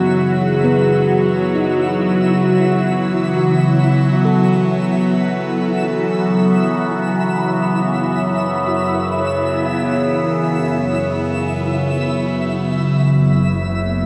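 Serene and melancholic, this slow ambient fragment in 3/4 at 67 BPM sits in F# dorian, where an evolving, morphing wavetable pad holds sustained chords up front through a phaser, drifting between E over F# and F# minor while a tense, string-like bowed drone with vibrato hums alongside. A very quiet handpan rings out meditative arpeggios with sharp finger strokes, and a twinkling granular texture adds octave-up shimmer high above, the synth texture fading in across the first 13.1 seconds inside a wet concert hall reverb. At 13.1 seconds an earthy chamber double bass section enters on a low F#, bowed with light vibrato, just as the excerpt is cut off.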